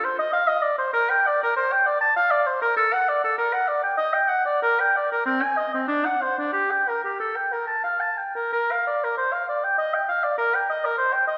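Serene and dance-like, this short passage is a baroque-style fantasia for unaccompanied oboe, cut from a longer piece. The solo oboe carries the whole line from 0.0 to 11.4 seconds, moving between C4 and A5 in a lilting triple metre with a free, rubato feel. Its tone is warm and classical in style, sitting up front in the mix yet with a distant, roomy quality. A wet recital-hall reverb, like that of a church or concert hall, lingers around each phrase. The opening material returns at 8.5 seconds, carrying the passage to its close.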